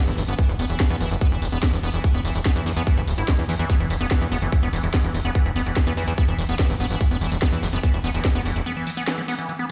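Heard through a big sound system in a bare stone room, this short cut from a longer psychedelic trance piece carries a stone-room reverb over light digital ambience, giving it a hard, echoing, alien atmosphere. At 145 BPM in straight 4/4 and E minor, it rests on a single E5 chord. A squelchy, resonant liquid acid bass plays the riff across the whole clip, its smooth square-wave tone shaped by a filter sweep and coloured with chorus, sidechain pumping and tape echo. Beneath it, a tight sequencer bass sits up front, punchy and nasal, blending sawtooth and square waves into an evolving filter pluck that drives the low end until 8.6 seconds. The drums are layered and electronic: a tight, up-front kick and a kit of hi-hat and cracking snare. The kick drops out at 8.3 seconds, and a break from 8.7 seconds leaves the acid riff and the kit to close the passage.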